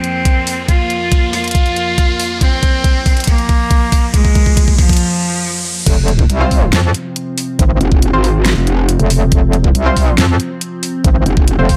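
A heavy, chaotic slice of half-time wobble dubstep in F minor at 139 BPM, set in light reverb and cut from a longer piece. It opens on a build-up: a bright, biting bowed cello carries the melody through a low-pass filter sweep and delay, over an evolving, detuned wavetable pad that pumps from sidechain and sits in the background with chorus and its own reverb. An overdriven dubstep kit with a huge snare, hi-hat and crash plays a fill while an electronic riser sounds, and a knocking, overdriven kick enters up front at 0.3 seconds. After a short break, the drop lands at 5.9 seconds as two aggressive, metallic wobble basses come in, saturated and compressed with chorus and overdrive, the second joining at 7.8 seconds. Bold, nasal stabs like an orchestra hit punch through the drop with reverb, delay and a cassette-tape grit, riding on the pad and the heavy drums.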